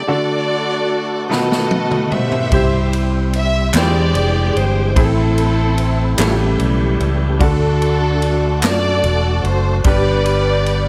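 A veiled, con sordino string section carries the melody up front in this jubilant, soulful slow gospel excerpt in 6/8 at 49 BPM, over a woody upright piano with audible action noise and a tonewheel organ sitting in the background through a slow rotary speaker with chorus vibrato. A roomy big-band drum kit with a boomy kick enters with a fill at 1.3 seconds, a round, amped fingered electric bass joins up front at 2.5 seconds, and crisp, dry group handclaps come in at 3.7 seconds. The chords move from D through B7, C, E7alt, Am and A7 back to D before landing on G, all in light studio reverb.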